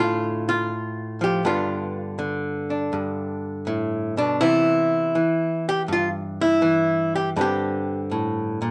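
A lone miked and amplified archtop guitar, dark, clean and hollow-bodied, sits up front in a moderate studio reverb, its picked notes moving through Dm7, G9, Cmaj7 and Gsus2 with a swung, cool, late-night feel in this solo jazz passage cut from a longer piece.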